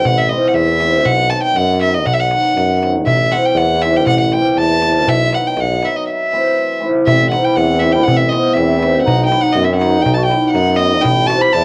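A warm, up-front violin opens this fiery, bittersweet Balkan wedding-band excerpt, its bowed sul tasto line soft in attack and floating over shimmering, ringing hammered cimbalom and a clear, roomy tuba with light vibrato, all in a straight 2/4 that moves between Am and B. A crisp, close metal-shell darbuka struck with hard hands enters at 0.1 seconds, and at 7.1 seconds a mellow, distant clarinet adds a classical-style second line in the background as the section repeats. The violin, cimbalom and clarinet carry the gentle grain of a home cassette recording, set in light reverb.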